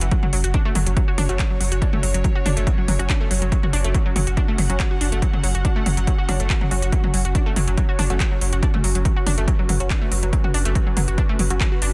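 A punchy, up-front electronic kick drives this intense, industrial peak-time techno excerpt at 141 BPM, joined by a thick, saturated sub bass on F#1, a layered drum kit of handclaps, smooth hats and toms, a bright, detuned unison pluck riff with overdrive and dub echo, an airy, breathy pad with chorus, and a muted, nasal dub chord stab that enters in the background at 1.3 s, with sidechain pumping on the bass, pluck, pad, stab and kit, all in a dry, dense and heavily limited mix.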